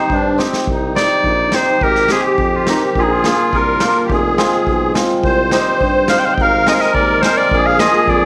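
A bright, up-front clarinet and a reedy, shimmering musette accordion open this soulful, festive klezmer passage in 2/4, joined by a breathy vintage tuba on bass and a street-band drum kit with a boomy kick, whose fill at 0.4 seconds coincides with the entry of a hammered, ringing cimbalom, before the clarinet carries a classical-style solo from 0.7 seconds over light small-room reverb, in an excerpt cut from a longer piece.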